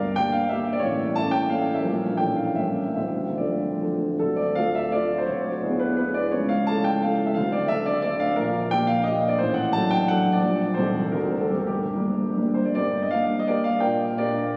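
A phone recording awash in wet cathedral reverb carries a short excerpt of a romantic classical dance in 3/4 for solo concert grand piano, its warm, open tone with deep bass and long sustain sitting up front as dotted rhythms sway with rubato at 134-191 BPM through a nostalgic, wistful D minor that turns to G minor at 8.4 s.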